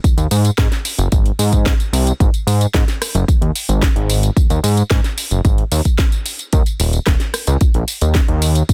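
A punchy, up-front electronic kick and a fat, detuned sawtooth analog bass with sidechain pumping and a filter sweep open this feel-good, groovy nu-disco cut at 111 BPM in Ab mixolydian, backed by a house drum kit of cracking snare, rim click, tambourine and metallic hats, all kept dry and densely limited for the full 8.7 seconds.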